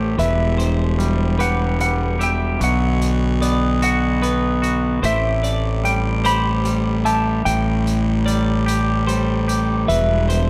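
A live band plays together in one room, caught with a moderate studio reverb that gives this short, melancholic, brooding post-rock cut a close and unhurried presence. The slow 6/8 pulse rests on a fuzz-soaked fingered electric bass, punchy, overdriven and up front, while a twangy, clean electric guitar fingers arpeggios beneath a bright, compressed twelve-string electric guitar tucked in the background. Very quiet, the pedal steel guitar holds sustained chords played with fingerpicks and slide, its volume swells shading the edges. At 0.2 seconds a warm, clean lap steel guitar enters with a high slide melody, and an acoustic hi-hat with a small, pumping room sound joins it softly at the same moment. The harmony drifts from Em through Bm to Am7 before settling back on Em, keeping the mood somber and suspended.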